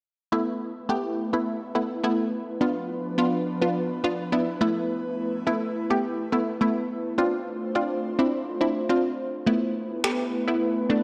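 A punchy, detuned sawtooth pluck sits up front from 0.3 s in this bittersweet yet energetic dance-pop fragment, carrying the accompaniment over Asus2, Bdim and Dm7 chords. At 0.7 s a soft, breathy pad with chorus joins to hold mellow sustained chords alongside it, and a brief burst of overdriven electronic finger snaps arrives at 10.0 s. The dark production is bathed in a lush hall reverb.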